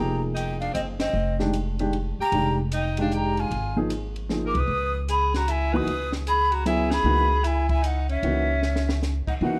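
A breathy, hollow flute carries the melody of this searching, intense modal jazz waltz, its tongued notes and vibrato sitting at a slight distance. Beneath it, a whispered alto saxophone with light vibrato and soft attack traces a second line that feels intimate yet roomy. A natural-sounding baby grand piano supplies the accompaniment, while a woody, thumpy pizzicato upright bass on gut strings stands up front and anchors the swung triple-metre feel. A compact cocktail drum kit joins at 0.4 s with a dark, smooth, rolled-off sound, a high-tuned snare and a punchy kick, adding fills and band accents along the way, one fill arriving just before the harmony moves from Fm11 to Dbm11 at 4.7 s. The ensemble sits in a moderately reverberant large studio, and this short passage is cut from a longer piece.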